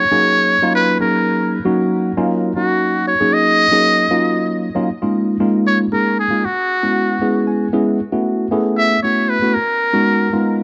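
A light reverb gives this short jazz excerpt a close, intimate space, with both instruments up front. A muted trumpet carries the melody as a solo, its metal mute lending a buzzy, thin edge softened by a breathy tone, gentle vibrato, scooped notes and soft attacks. Beneath it, a worn, slightly out-of-tune tine electric piano plays the accompaniment through a combo amp, lightly overdriven and colored by a phaser, and adds a brief fill from 7.2 to 8.0 seconds. The mood is nocturnal yet funky, set in a straight-feel 6/8 lilt. The opening section rests on a minor ninth chord, and from 4.9 seconds the harmony moves through a chain of suspended ninth chords.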